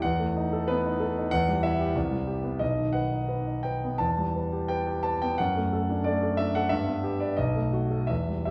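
A recital hall's wet reverb, with a 1.5-second tail, surrounds this brief passage from a longer piece, and the listener seems to sit further back in the room. It is a romantic character piece for solo piano in 2/4, with a brooding, passionate mood and a rubato feel that lets the tempo drift between 78 and 96 BPM. A concert grand plays alone for the full 8.5 seconds, its tone warm and open, with a deep bass and an up-front presence that reaches from B1 to A5. The harmony opens on B7 over E, settles into E minor, and passes through C major seventh and B before returning to E minor. It then moves through D over F sharp and G, and it ends on B7 at 7.4 seconds.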